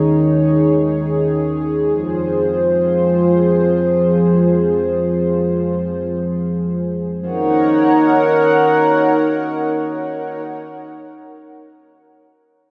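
Floating in free time, this moody yet driving synthwave fragment is carried entirely by a chorused pulse-width pad that holds sustained chords from Absus4/Eb through Fm to a closing Ebm7 at 7.2 seconds. The pad sits up front with a shimmering, dark, retro character, built from pulse, sawtooth and square waves with a sub octave, ring modulation, slow attacks and long releases, and a filter sweep evolves its tone until 7.2 seconds. A lush hall reverb bathes the sound, and the bright 1980s-style digital production frames a passage cut from a longer piece.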